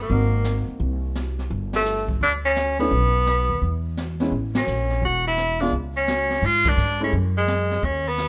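A moderate studio reverb gives this short cut from a longer jazz piece a roomy, late-night feel, with the breathy tenor saxophone and the upright bass sitting up front. The small-group swing and bop feel carries a moody air as the clear, vintage-toned saxophone sings the melody with vibrato in a solo jazz style. Beneath it, the bass is played pizzicato with a woody, growly, thumpy tone, while a baby grand piano adds natural, short-sustained accompaniment before dropping out at 7.1 seconds. The brushed drum kit offers dark cymbals, a high-tuned snare and a boomy kick from a natural-sounding room. The harmony moves through chords such as G#9, Gsus2, E and F#sus2, and the band hits accents together at 1.7, 4.5 and 6.6 seconds.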